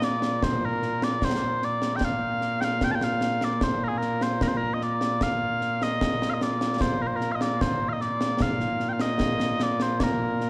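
Stirring and ceremonial, this short passage of Scottish pipe music, cut from a longer piece, moves in a straight 2/4 feel led by mellow small bagpipes carrying a sweet, continuous melody with vibrato, up front throughout its 10.5 seconds. Concert snare drum and concert bass drum, acoustic and also up front, sit in a live room with bright cymbals, while moderate concert hall reverb and a dark, warm production give the recording its rounded depth.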